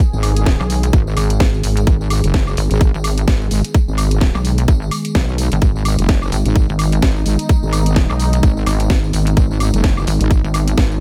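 Swaggering and gritty, this bass house cut moves at 128 BPM in 4/4 with a 16th-note swing, sitting on a single G# minor chord throughout its 11 seconds. A layered house kit plays from the start, its cracking snare, hi-hat, tambourine and woodblock carrying a tape-warm, small-room character, and an overdriven, tight electronic kick joins up front at 0.5 seconds. Two heavy basses dominate the low end: a wobbling, detuned sawtooth-and-sine wobble bass with chorus and a resonant, saturated edge, and a pulsing pluck wobble bass entering at 0.6 seconds, thickened by chorus and tube saturation. Both basses and the pad duck under sidechain pumping. In the background, an airy, evolving pad with a noise layer and filter swell holds sustained chords, bright and chorused. The mix is dry and close, with little reverb, leaving the kick and basses punchy and forward.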